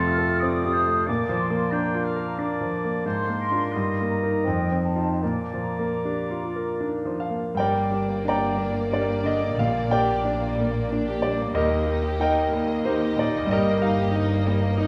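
A clear, smooth concert grand piano with deep bass sits up front and carries the melody throughout this lush, passionate classical passage in a rubato triple metre, cut from a longer piece. In the opening, an airy flute ensemble, a distant oboe, a punchy clarinet and a bassoon add second lines and accompaniment, and from 7.6 s the music turns to the minor as veiled, con sordino string sections take over, with violins on melody and second line, very quiet violas, and cellos and double basses on the bass. Close, dry timpani played with hard mallets sound from 9.6 s, all within a wet recital hall reverb.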